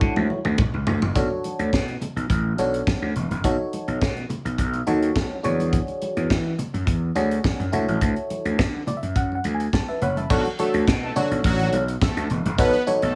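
A small room reverb frames this danceable, funky early-eighties boogie funk cut, taken from a longer piece. The tight acoustic drum kit of crash, hi-hat, kick, snare and toms sits up front, its high-tuned snare and tight kick dressed in gated reverb, and it opens the passage with a fill. A bright, growly slap bass, overdriven and punchy, drives the low end alongside it, while very quiet congas with a damped, thin-skinned, vintage tone add soft-handed percussion underneath. A glassy FM electric piano with a bell-like attack and chorus and phaser comps through chords such as Dmaj7, Bm9, B9 and E13, then takes a short fill from 8.6 to 10.3 seconds. At 10.3 seconds a bold, fat analog synth brass second line enters, its detuned sawtooth sound carrying chorus, vibrato and an evolving filter sweep as the opening material returns.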